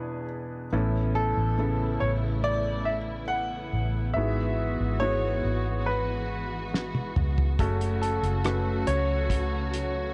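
Tender and emotional, this excerpt of a slow pop ballad opens with a clear baby grand piano carrying the melody over a mellow, felt-muted upright piano accompaniment, both close enough that their action noise is audible. At 0.7 seconds a lush, bowed string section with vibrato enters with sustained chords, joined by a round, dark fingered electric bass up front. A dry 70s drum kit with a fat snare comes in at 6.7 seconds with a fill, and the whole recording sits in a small, lightly reverberant room with a worn, warbling cassette-tape pitch drift and a dulled top end.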